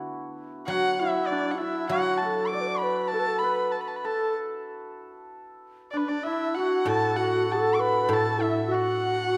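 A bright, shimmering hammered dulcimer and a mellow, silvery guzheng played with fingerpicks open this festive, graceful passage of Chinese traditional chamber music, set in a D gong mode at 98 BPM with a loose, rubato feel. At 0.7 seconds a single rich, earthy erhu takes the bowed melody up front, its biting tone softened by a smooth top, light vibrato and sliding portamento, while a close-miked wooden-headed alto flute adds an airy, slightly unsteady second line with a soft attack. A wet recital hall reverb surrounds the ensemble, and the short section is cut from a longer piece.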